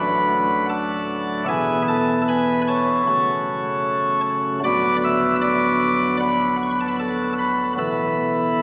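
A chamber organ opens the recording alone, its sparkling flute stops sitting up front with a light, bright chamber voicing and a distinct chiff at the start of each note. This is a serene, reverent classical chorale-style fragment in a steady, straight 4/4, cut from a longer piece and lasting 8.6 seconds. The organ covers a broad span from D1 up to E6, moving through D, E and F#m before settling on Bm/D and finally pausing on Esus4 at 7.8 seconds. A wet church reverb with a long decay surrounds the instrument, so each chord hangs in the space. The whole sound carries the patina of a very old 78 rpm record, with vinyl crackle running beneath the organ.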